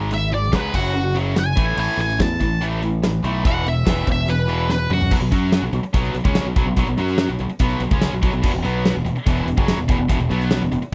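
A straight 4/4 pulse at 144 BPM drives this sunny, swaggering classic rock excerpt, cut from a longer piece and captured as a dry, close 1970s-style studio recording with little reverb. A big acoustic rock kit sits up front in a bright stone room, its fat snare and punchy kick joined by crash, hi-hat and toms, with a drum fill from 4.7 to 5.1 seconds. Two picked electric guitars, one overdriven and one tight and distorted, play riffs spanning E2 to F#4 throughout. A growling fingered bass, direct and amped with overdrive, holds the low end from E1 to F#2. A dark octave-fuzz lead guitar, up front with wah, distortion and slapback echo, plays a solo between F#4 and A5 until 5.1 seconds, over chords moving from G#5 through F#5 and A5 to Esus2. At 5.1 seconds a very quiet, double-tracked crunchy guitar with a warm tone adds a further riff as the harmony shifts to B5 and then E5.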